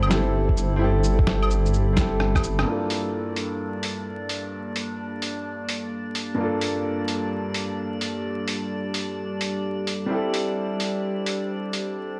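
Future garage at 129 BPM in G dorian, this wistful, nocturnal excerpt sways with a swung 16th-note feel and a dry, gritty hardware sound dusted with vinyl crackle and light reverb. A clear, woody upright piano carries the accompaniment throughout, up front and smooth, pumping against the sidechain through a low-pass filter and analog delay, with a filter sweep on it from 2.7 seconds. Alongside it a warbling, nostalgic tape-like pad holds mellow sustained chords, roughened by 12-bit sampler grit and chorus, and it too gets a filter sweep once the second section begins. A glassy texture of drifting overtones floats calmly above, while a deep, rumbling detuned saw bass and a muffled, thumpy electronic kick anchor only the opening, the bass dropping out at 2.6 seconds. A pitched-down, lo-fi sampler drum kit of claves, hi-hat, rim click, shaker and a medium-tuned snare plays on, with a drum fill and band accent marking the turn from Am7/G to a long stretch of Gm7 before Am7/G returns at 10.1 seconds.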